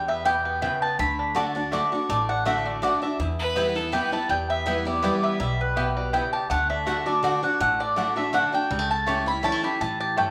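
Recorded live by a band in one large studio with moderate reverb, this rustic, driving bluegrass excerpt in E dorian moves at 163 BPM in a lightly swung 3/4. An up-front, round, double-strung mandolin carries the melody alongside a twangy, fingerpicked banjo, while a second, mellow mandolin adds stabs from 0.2 s, a bright dreadnought guitar with audible finger squeak picks the accompaniment, and a woody, thumpy gut-string upright bass anchors chords moving among Em, D and A/C#. A biting, nasal fiddle with light vibrato steps forward with a short second line at 3.4 s, just before the next section begins at 4.3 s.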